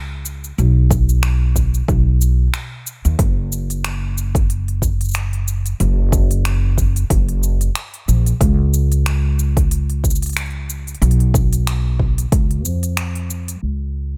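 The sound is dry, with little reverb and a low-pass filter that softens the top of the mix. This hopeful, playful folktronica passage, cut from a longer piece, moves at 92 BPM in 4/4 with a light swing on the sixteenths. A pizzicato upright bass with steel strings opens at 0.0 seconds, sitting up front with a woody, dark tone. An organic electronic drum kit of cabasa, finger snaps and crisp hi-hats joins at 0.3 seconds, set low in the balance, with low-pass filtering on its snare, percussion and hats. A deep, up-front electronic kick drum with a produced, electronic character enters at 0.9 seconds and carries on until 12.5 seconds.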